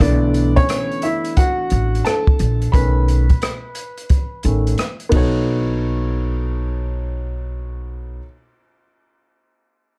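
A woody, natural-sounding upright piano leads this mellow, cool jazz-hop excerpt with a solo through 5.5 seconds, moving from Bm11 to B7 over a swung 4/4 groove. Plucked upright bass with a bright, thumpy steel-string tone sits up front in its low register, while a roomy acoustic jazz kit with dark cymbals, a boomy kick, hi-hat, ride and rim clicks plays until 5.3 seconds. Light reverb and a dark, warm production give the cut-off fragment a hazy, laid-back feel.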